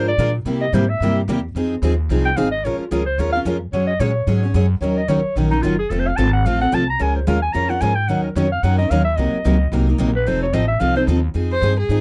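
A clear, forceful clarinet solos with light vibrato over two picked steel-string acoustic guitars, one brilliant and finger-squeaky up front and one warm in the background, and a woody, thumpy pizzicato double bass in this swinging, virtuosic jazz manouche excerpt in Bbm at 220 BPM, recorded dry and close in a 1970s studio style, before a smooth, boxy bowed violin takes the melody at 11.5 seconds.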